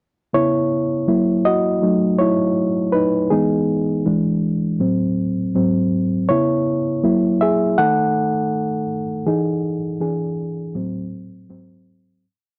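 A dry, close recording with a 1970s studio character places a lone reed electric piano up front, its reedy, worn and slightly out-of-tune tone heard through its built-in speakers. This smooth soul piece in E major moves at 81 BPM with a light sixteenth-note swing, the piano voicing drop-2 chords that halve the chord rhythm through a progression of C#m7, F#7, Emaj7, Am6 and G#7. The single verse runs from 0.3 seconds, and the recording fades out from 9.3 to 12.2 seconds.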